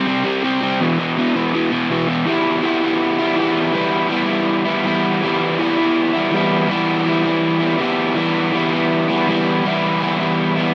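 A crunchy, overdriven electric guitar opens this gritty rock fragment on a C5 power chord, shifting to E5 within the first second. The guitar plays alone for the whole 10.7 seconds, picked and double-tracked, with a warm tone that sits up front in the mix. At 2.3 seconds the music moves into a new passage that settles on E minor, and the guitar ranges from E2 to E4. The tempo is a brisk 163 BPM in a straight 4/4, giving the menacing playing a steady drive. A light reverb adds a touch of space around the overdriven sound, and the clip is cut from a longer piece.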